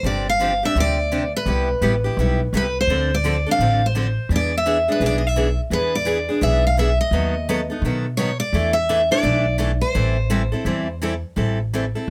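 Close, detailed microphones and light reverb frame this short cut from a longer jazz manouche piece, an acoustic string swing in A minor at 170 BPM with a brisk, virtuosic, swinging feel. A bright picked steel-string guitar with fresh strings carries the melody up front, its finger squeak audible, until it drops out at 11.0 seconds. A second, equally bright picked steel-string guitar supplies accompaniment through chords like Cmaj7, E7 and Am7, while a pizzicato upright bass with gut strings adds a woody, dark, thumpy low end.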